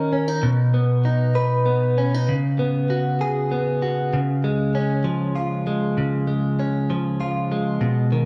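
A tender, romantic pop excerpt in 6/8 at 65 BPM features a solo clean electric guitar, recorded direct, picked, compressed and placed up front, its warm tone trailed by dub echo and moderate spring reverb in a small room as it moves from B to C#7sus4 before settling on C# at 4.1 seconds.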